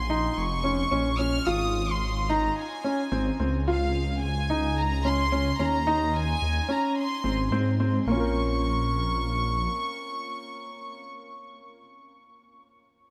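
Melancholic and cinematic, this short cut from a longer piano and strings electronica piece moves in a straight 4/4 pulse, opening on a drop that runs from the start to 8.1 seconds. A violin section carries the melody high and close, its bowed ensemble sound reedy with a gut-string, period-style tone, touched by tape echo. Beneath it, a dark, detuned sawtooth bass sits up front with a deep, rumbling, beating weight and sustained notes, stopping at 9.7 seconds. An upright piano with a woody timbre plays a riff in its middle register, also coloured by tape echo, and continues to the end at 11.8 seconds after the violins stop at 11.0 seconds. A huge ambient reverb with a long tail surrounds the parts, and the harmony moves from Bbm through Ab, Db, Eb7sus4 and Ab again before returning to Bbm as a new section begins.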